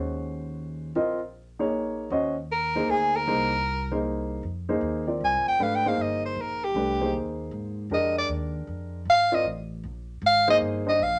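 A moderate studio reverb places this brief cut from a longer modal jazz piece in a modest room, with the soprano saxophone and the grand piano sitting up front. The music swings in 3/4 and carries a spiritual, hypnotic mood. A concert grand piano with a warm, deep bass and short sustain plays the accompaniment from the start, moving from Ebm7 to Abadd9, while an acoustic upright bass plucks pizzicato beneath it with a woody, growly steel-string tone. At 2.5 seconds a bright, close-miked soprano saxophone enters with the melody in a jazz style, its light vibrato carrying over the chords. From 4.4 seconds the harmony settles on Fm11 as the saxophone takes a solo, and the piano drops out at 11.0 seconds just before the recording ends.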